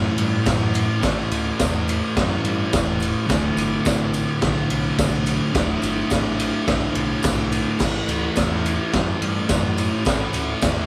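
Raw and swaggering, this short garage rock cut rolls along at 106 BPM in D major, with a thick, double-tracked fuzz guitar riff up front over a growling, overdriven picked bass, a gritty small-room drum kit with a boomy kick, a high-tuned snare, crash and ride, and a jingly tambourine tucked in the background, all played live in one room with light reverb as the chords move from A5 to D5 at 3.3 seconds and back to A5 at 7.8 seconds.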